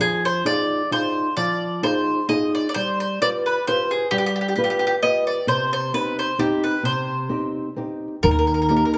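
Heard in a moderate recital-hall reverb with a dark, warm production, this wistful, romantic Italian folk serenade excerpt in C harmonic minor sways at 130 BPM in a rubato, lightly swung 3/4, with a bright, up-front double-strung mandolin carrying the melody through a slapback echo over small, fingerpicked nylon-string guitar and woody pizzicato upright bass across Fm7, G7 and Cm, the bass stopping at 8.8 seconds just before the other two end at 9.0.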